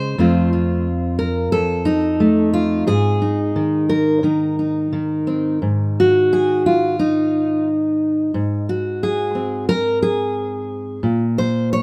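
A straight, unhurried 4/4 pulse carries this wistful, melancholic folk excerpt, played by a lone fingerpicked steel-string dreadnought acoustic guitar tuned slightly below standard pitch. The full-bodied guitar sits up front in a light reverb, moving from an F chord to Ab at 2.9 seconds and settling into a second passage from 5.6 seconds. Harmony falls away at 11.0 seconds before the clip ends.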